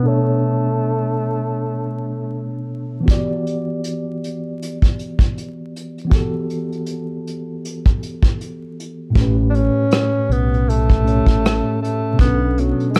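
A breathy tenor saxophone leads this hazy, reflective lo-fi hip hop excerpt, its subtoned jazz phrases carrying vibrato and scooped notes through a low-pass filter and tape echo, heard briefly at the opening and returning at 9.5 seconds. Underneath, a mellow tine electric piano with a cassette-tape tint plays throughout over Bm9, Em9 and A9 chords, while a filter sweep runs through the first section. A brushed vintage kit with a punchy kick and rolled-off top enters at 3.1 seconds on swung 16ths, and a round, dark fingered dub bass arrives at 9.2 seconds, all wrapped in a dusky production with vinyl crackle.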